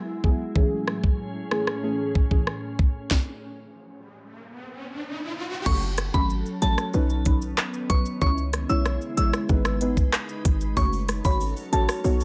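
Dry and close, this sultry, hypnotic dancehall excerpt sits its electronic island-pop drum kit up front, with a knocking kick, sharp snare, smooth hats, handclaps, rim clicks, shaker and crash cymbal. A glassy, ethereal FM pad holds slow-blooming chords under its own ensemble chorus, built-in reverb and sidechain pumping, while a deep, dark chord stab adds soft, wave-folded hits through chorus and phaser. The chords drop out at 3.1 seconds for a stop, filled by a brief electronic riser, and at 5.7 seconds the second section arrives. There a punchy, tight 808-style bass with a sine body and noise layer pushes forward, and a pure, gentle bell carries the melody high above, warbling and vintage through chorus, phaser and digital delay. Near the end, a distant tube shaker with a large-room acoustic tone slips in at 10.8 seconds.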